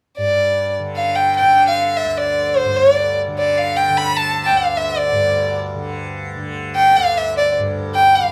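A rich, smooth bowed violin sings a meditative, solemn Hindustani classical melody with steady vibrato, held up front over a softly plucked, bright, buzzing tanpura drone that shimmers quietly beneath it from 0.2 to 8.3 seconds, all at 150 BPM in 3/4 and set in a small, reverberant room heard from further back in this brief cut from a longer piece.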